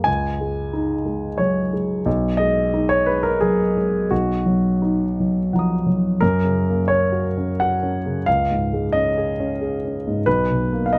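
Uneven beats and rubato phrasing give a gentle sway to this 3/4 fragment of hopeful, peaceful neoclassical minimalist piano at 88 BPM in F# major, where a solo grand piano with a dark, mellow, intimate tone, audible action noise and short sustain sits up front in light reverb, ranging from B1 to D#6 through sus2, major-seventh and add9 harmonies.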